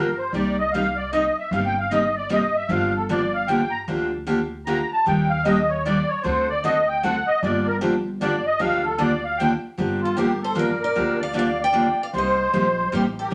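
Swinging and fiery, this excerpt of acoustic string swing in G minor moves at 152 BPM in a 3/4 lilt, with an up-front, reedy, shimmering musette accordion soloing until 9.8 seconds over a boxy picked parlour guitar accompaniment and a woody, growly pizzicato upright bass, before a bright, full-bodied jumbo guitar carries the melody from 10.1 seconds with audible finger squeak, all in a wet studio reverb.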